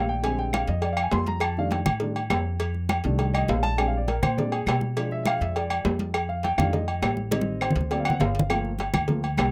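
A natural-sounding baby grand piano solos up front over a pizzicato upright bass with a steel-string tone in this sophisticated, danceable Afro-Cuban jazz excerpt in straight 4/4 at 204 BPM in F mixolydian; from 0.2 seconds, ringing, vintage agogo bells and timbales join up front alongside bright, damped congas and a tight, high-tuned cowbell in the background, with woody claves slipping in just after, and a drum fill from 7.3 to 8.5 seconds spans the Am7b5 and D7alt changes before Gm7 arrives, with light reverb on a rough home demo mix.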